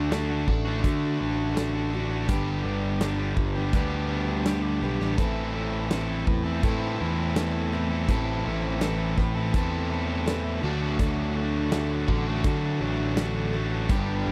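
Dry, close 1970s-style studio sound frames this gritty, driving classic rock excerpt at 83 BPM in 4/4, where an up-front fuzz electric bass and a big, natural acoustic drum kit with a punchy kick and medium-tuned snare push beneath a bright overdriven electric guitar riff, alongside a warm hollow-body guitar riff in the background, while a shimmering, octave-doubled twelve-string acoustic guitar, complete with finger squeaks, picks its accompaniment behind them through D, G, Amadd9 and back to D.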